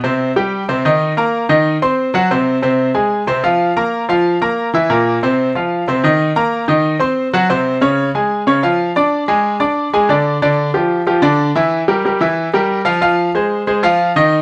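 A straight 4/4 pulse carries this short Latin piano fragment, which feels passionate and fiery. A solo grand piano fills the whole recording, ranging from Bb2 up to D6 with a brilliant, up-front tone. The sound is intimate enough that the instrument's action noise is audible, and its long sustain lets notes ring into the moderate studio reverb. The opening passage moves through Cm7, Fmadd11/C, Fsus4 and Db harmonies, punctuated by brief chordless moments. At 10.4 seconds a new section begins, shifting through G5 and Edim before settling on Fm7.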